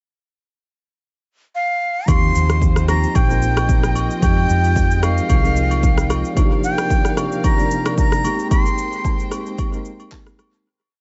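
Hypnotic and deep, this short amapiano piece moves at 112 BPM in 4/4 with a light 16th-note swing, opening on a pickup bar before the groove settles in at 2.1 seconds over chords of Eb69, Fm9, Cm11 and Abmaj7. A breathy, bright jazz flute carries a motif-based melody of call phrases with vibrato, crisp chiff and a reedy edge, trailed by dub echo. A mellow tine electric piano plays rootless voicings in a push chord rhythm with grace notes, while a dark studio string section holds a smooth, bowed sul tasto pad in the background. Up front, a punchy deep house drum kit lays down a steady shaker, soft kick, handclaps and a syncopated rim, joined by a round, hollow-body fingered electric bass playing a dotted figure until 6.2 seconds. Agogo bells and woodblock tap out a timeline with dub echo from the back of the echo-heavy mix, whose top end rolls off above 7.8 kHz, and the piece fades out from 8.5 seconds.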